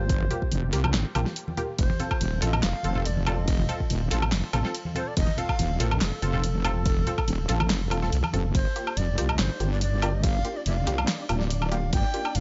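A dry, dark mix with its top end rolled off frames this cavernous excerpt of deep dubstep in G minor, moving at 142 BPM with a half-time, lightly swung feel. Up front, a heavy, saturated wobble bass with chorus anchors the low end, joined by a deep, tape-warm electronic kick and a layered deep house kit of fat snare, handclaps, hi-hat, ride cymbal and woodblock. Muted, detuned chord stabs with a filter pluck, chorus and dub echo outline Gm7 and F, while a breathy, reedy shakuhachi carries the melody with vibrato, tongued chiff and its own dub echo. Very quiet congas and bongos add acoustic colour until 8.4 seconds, and the kick drops out from 7.7 to 8.5 seconds before the second pass returns to Gm7. From 8.9 seconds a flickering, grainy granular texture with a mellow, slow-blooming tone sits in the background, bathed in its own reverb.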